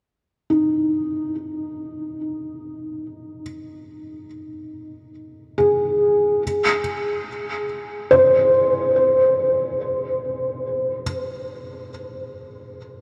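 In free time, this peaceful, weightless ambient fragment from a longer piece fades in as a felt-muted upright piano enters at 0.5 seconds with soft arpeggios, its dark, intimate tone sitting up front with audible action noise and trailing delay, all set in a huge, wet reverb.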